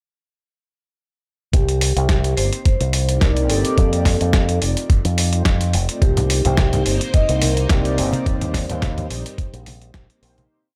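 A dusty, tape-toned sound in digital ambience carries this sensual, cosmic nu-disco piece in C dorian at 107 BPM with a light 16th-note swing, where a thumpy, compressed electronic kick drives four-on-the-floor up front beside a punchy, tube-saturated fingered bass with an envelope filter in a dotted rhythm, a gritty soul sampler-style kit adds hi-hat and a disco backbeat on a medium-tuned snare, a smooth analog pad with chorus plays syncopated chord stabs from 2.4 seconds, and a ringing soft-mallet vibraphone with dub echo and slow motor vibrato states hook phrases, while from 6.0 seconds a lush string machine with sidechain pumping joins in the background, followed at 6.2 seconds by bright, close congas, as the piece fades out from 7.5 seconds over Cm7, F7 and Eb6 chords.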